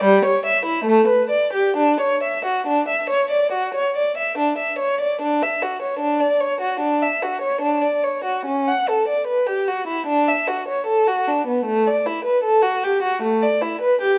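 Flowing and radiant, this fragment of a baroque-style suite movement for unaccompanied violin unfolds with a free, rubato feel, the lone bowed violin sitting close and up front with a warm tone, soft attacks, vibrato and expressive portamento, while a reverberant stone room lends a lingering glow as the music moves into a new section at 5.2 seconds before breaking off at 14.2 seconds.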